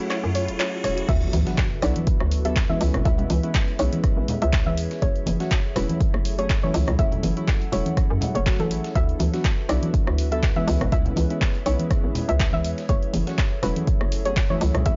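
This deep house excerpt opens on a brief build-up, with a riser sweeping over a warbling, nostalgic pad, pulse-and-sawtooth analog keys stabbing out F#m7, and a very quiet bowed string section that drops out at 1.1 seconds. Within the first fraction of a second, a soft, round pluck with a dark sub-octave body begins singing the melody, a tape-warm analog drum machine adds crash, handclaps, hi-hat and rim clicks, and a hollow, knocking FM bass sets up a bouncy low end. At 1.1 seconds the drop lands with an impact and a punchy, up-front electronic kick at 122 BPM in F# minor, with a 55% swing on the sixteenths, joined by a very quiet, gritty sampler-style kit with a fat snare. Compressed, saturated congas and bongos fill out the groove, and the pad, keys, bass and hand drums all breathe with sidechain pumping over a slow cycle of F#m7, D69 and C#m7. The sound is dry and gritty, with transformer saturation and a dulled top end that give the track a deep, late-night, hardware-bound character.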